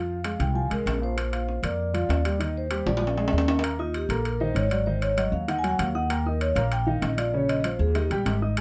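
Afro-Cuban jazz at a brisk 194 BPM in straight 4/4 sets a lively, sophisticated mood in this cut from a longer piece. A mellow, ringing vibraphone with soft mallets carries the melody over a warm grand piano. Beneath them, an up-front, woody, growly pizzicato upright bass moves alongside metal-shell timbales in a small room, all under light reverb. The harmony opens on Fm, a drum fill at 2.9 s leads into a vibraphone solo from 3.6 s, and the passage closes on Eb.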